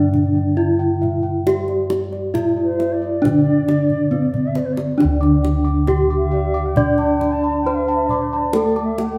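A close, dry bronze metallophone carries the melody from the start with shimmering paired-tuning beats, joined by a mellow bamboo bansuri with vibrato on a second line, a soft, band-limited vintage metallophone accompaniment, round bossed-gong arpeggios struck with padded beaters, a beating bossed-gong bass and a tight, hard-handed kendang that plays a fill at 3.9 seconds, before an airy background metallophone adds arpeggios at 5.0 seconds, giving this serene Javanese gamelan passage in D slendro at 68 BPM the resonant glow of a large, reverberant room.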